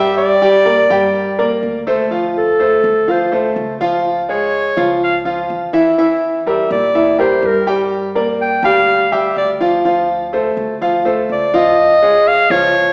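Sultry and danceable, this short cut from a longer piece is Latin music in the Cuban son and guajira style, moving at 124 BPM in a straight 4/4 in D minor. A clear, classical-style clarinet carries the melody up front, taking a solo from 2.1 seconds through the end of the clip. Beneath it, a bright concert grand piano plays arpeggios with a brilliant, open tone, deep bass and short sustain, also placed up front. An acoustic upright bass with gut strings adds a woody, thumpy pizzicato line that sits quietly in the mix. The harmony cycles through Gm, Dm7, C# and Em7b5, and the whole performance is bathed in a wet recital hall reverb that suggests a church or concert hall, heard through a small-speaker sound.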